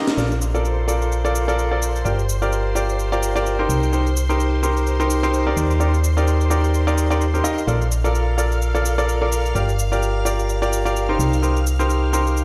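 This joyful, uplifting piano house excerpt opens at 0.0 s on a break with a drum fill, as a clear, up-front baby grand piano riff enters alongside shimmering vintage string-machine violins holding sustained chords in the background. A band accent lands at 0.1 s, and by 0.2 s a punchy, round FM bass arrives with a fast attack and dark, decaying tone, thickened by tube saturation. The electronic house kit of cracking snare, metallic hats and shaker is layered and overdriven, with a 57% swing on the sixteenths at 128 BPM in 4/4. The piano carries a tape echo, while the bright sawtooth strings bloom slowly through an ensemble chorus. In Bb major, the harmony moves through Bbmaj7, Gm7, Cm7 and Ebmaj7 before circling back, all set in a big, bare-room sound with a large studio reverb.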